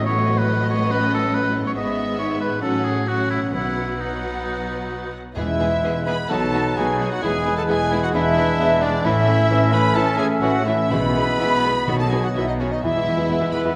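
A close-miked trumpet punches out stabs from 5.4 s, joined by an airy, distant flute, a clarinet and a light-vibrato bassoon, in this graceful, cheerful excerpt from a fast romantic orchestral movement in E major, paced with rubato at around 118-143 BPM, where a dark, expressive violin section carries the melody over a clear, present oboe, lush background violins and violas, a rich cello section and double basses on the bass line, ringing harp arpeggios, very quiet mellow horn chords and round soft-mallet timpani, all bathed in a wet scoring-stage reverb.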